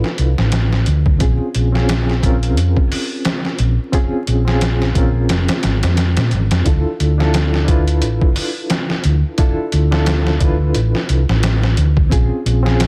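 A dark, round hollow-body electric bass with tube saturation sits up front from 0.2 s in this brooding, hypnotic trip hop fragment with swung sixteenths, over a muffled, pitched-down sampler-style kit with a thumpy kick and a medium-tuned snare, overdriven and re-recorded in a small room, while a reedy electric piano through its built-in speakers carries medium tremolo and tape echo against vinyl crackle and a dense, heavily limited master.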